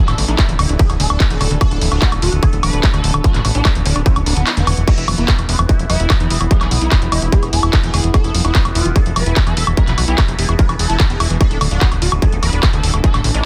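A swarming, bright rave lead with detuned unison and dub echo opens this hypnotic, driving psychedelic trance excerpt at 147 BPM alongside a squelchy, gritty acid bass riff pushed through distortion and tape echo, both sitting in the background and pumping against the sidechain. A punchy, funky plucky analog bass with tube saturation sits up front beneath a distorted electronic kick that drops out briefly at 4.5 seconds, while a techno kit of crash, handclaps, hi-hat and woodblock adds warm hats. Very quiet underneath, an overtone-sweeping drone holds sustained chords and a warbling, nostalgic lo-fi pad adds texture, all within a dry, dense, heavily limited modern mix moving between D and E chords.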